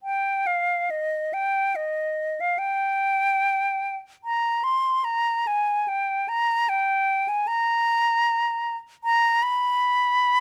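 Classical solo flute music, this short fragment of a longer piece carries a mournful, meditative mood across its 10.4 seconds. A lone silver concert flute plays throughout, moving freely and expressively at roughly 67-80 BPM in 3/4, with rubato letting the pulse stretch and relax. Its line sits in the upper register between Eb5 and C6, tuned to A4 = 441 Hz. The tone is airy with a metallic sheen, shaped by vibrato and soft attacks, and it sits up front in the mix. Close, detailed microphones capture the instrument intimately, while light reverb adds a faint sense of space around it.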